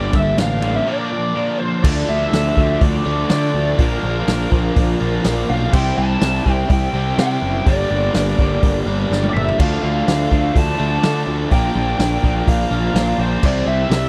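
Classic rock in D minor at 124 BPM, this brooding, driving passage is cut from a longer piece and captured in a dry, close 1970s-style studio sound. A dark, lo-fi lead guitar through a small cranked amp carries the melody with wah, overdrive and slapback echo, while two picked rhythm guitars, one biting and the other bright and set in the background, push overdriven riffs underneath. Up front, a round, punchy fuzz bass and a vintage kit with a punchy kick and medium-tuned snare drive the groove, and the drums play a fill at 9.1 seconds. A very quiet tonewheel organ holds piping, scooped chords with key click and slow rotary-speaker motion from the start, and at 1.8 seconds a reedy electric piano with fast tremolo and a woody, shimmering twelve-string acoustic guitar join, both kept very low. The harmony moves from Gmadd9 and Bb into a cycle of Dm, Bb, C and Gm.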